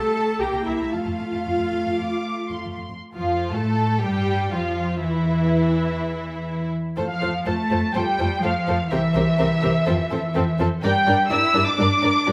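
This spirited excerpt of a quick classical-period movement for string orchestra opens with violins on a second line, violas in accompaniment and cellos on the bass, every section playing con sordino. At 0.4 seconds a lead violin section takes up the melody high above them, its vibrato tone soft in attack and up front, while the double basses join the cellos underneath. The music moves in 4/4 at roughly 113-128 BPM in F major with a flexible, rubato feel. It shifts into a new passage at 3.0 seconds, with harmonies that circle F and C7, a stretch at 5.0 seconds where the chords drop out, and a turn to G minor near the end. The second violins carry a lush, symphonic sheen, whereas the violas and cellos sound veiled and distant with light vibrato. Close, detailed microphones and light reverb lend these dark string sections an intimate presence.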